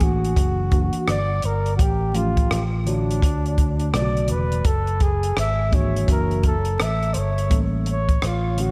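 A swung sixteenth-note groove in 4/4 sets a smoky, cool jazz-hop mood, carried by a compact cocktail drum kit with a dry, punchy kick, hi-hat and rim clicks, and an up-front, round, dark fingered electric bass. Over it a breathy flugelhorn sings a whispered, intimate jazz solo with vibrato, a soft attack and a touch of delay, while a worn, slightly out-of-tune tine electric piano comps through colourful chords such as F#aug7, Dmaj7 and F#7alt. All four parts play throughout this 8.7-second fragment, set in a small room with light reverb and a bed of vinyl crackle.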